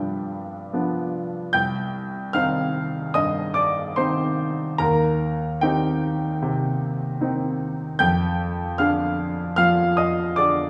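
Set in a wet recital-hall reverb with a small room ambience, a present, up-front grand piano rings clear across a span from C2 to G6 in this brief cut from a longer romantic character piece. Playing solo in C minor at 74 BPM in 4/4 with a rubato feel, it moves from G7/C to Cm, then Cm/Eb, and reaches Ddim/F at 8.0 seconds. The mood is bittersweet and stormy.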